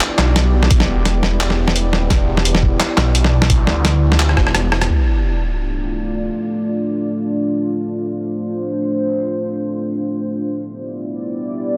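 Half-time drum and bass at 172 BPM in D dorian, this dark, heavy excerpt opens straight into a drop, with a 55% swing on the sixteenths. A gritty, pitched-down sampler-style drum kit sits up front with handclaps, hi-hat, rim click and a medium-tuned snare, joined from 0.7 seconds by a thumpy, compressed electronic kick. A thick, swirling detuned saw bass, saturated and run through a phaser, enters at 0.2 seconds and drives the low end over Em7. A drum fill and a band accent close the drop before everything but the pad cuts out at 4.9 seconds, where an electronic sub drop lands as an impact and the harmony shifts to Dm. From there a deep, moody ambient pad with chorus, built-in reverb and sidechain pumping carries on beneath the sub drop and beyond, its wave-folded, ring-modulated tone sustaining until the harmony returns to Em7 at 10.5 seconds. The mix is dense and heavily limited, with light reverb and a tape-toned grit on the drums.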